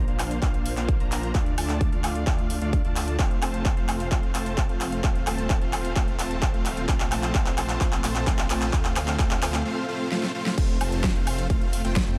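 Festival progressive house at 130 BPM in F mixolydian, this triumphant, euphoric excerpt pairs a huge, thick, detuned supersaw riff, pumping, low-pass filtered and dub-echoed up front, with a menacing, beating saw bass and a big-room kit of huge snare, metallic hats, handclaps, woodblock and crash over a punchy layered kick, building with drum fills over chords from Bbadd9 through Dm and F7/Eb before the drop lands on F at 10.6 seconds.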